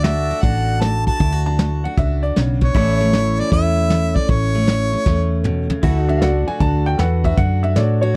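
Honky-tonk and classic country with a sunny, heartfelt mood, this short cut from a longer piece moves with a swung 4/4 feel. Up front, a clear harmonica carries the melody with light vibrato and a soft attack. Beneath it sit a bright, full-bodied picked dreadnought acoustic guitar, a round, punchy hollow-body electric bass and a soft brush kit with a tight kick and a medium-tuned snare. A pedal steel guitar stays in the background, holding sustained chords with fingerpicks, slide and volume swells under a subtle chorus. A brilliant, woody upright piano adds a brief second line near 1.5 seconds, then takes a solo from 5.8 seconds after a drum fill, while a concert grand piano with deep bass joins the accompaniment. The sound is dry and close, in the manner of a 1970s studio recording.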